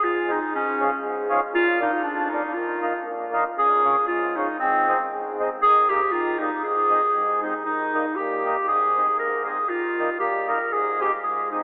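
A lightly swung, rubato two-beat pulse carries this festive, bouncy alpine dance-band fragment, where a clear, distant classical-style clarinet sings the solo melody up front over a reedy, full, mellow accordion accompaniment, both bathed in a wet cathedral reverb and filtered through a telephone-like sound as the music moves into a new section at 7.7 seconds.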